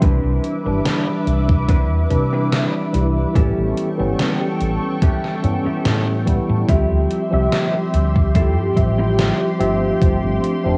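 Vaporwave in D dorian at a slow 72 BPM in straight 4/4, this hazy, melancholic excerpt drifts through Cmaj9, A7, Dm11 and G7sus4 under a worn, warbling cassette-tape sheen with light reverb and small room ambience. A mellow tine electric piano sits up front with the accompaniment, its clean tone roughened by vintage 12-bit sampler grit, analog chorus and delay. Above it, a lush unison pad holds bright, thick sustained chords built from detuned sawtooth and square waves with a sub octave, slow attack and long release, colored by chorus and phaser. A dark, compressed electric guitar plays a fingered riff through subtle chorus and analog delay, while a woody fretless bass, round and hollow-bodied, anchors the low end. An overdriven, thumpy electronic kick runs until 10.2 seconds, and a gated 80s drum machine supplies hi-hat and a gated-reverb snare with overdrive until 10.6 seconds.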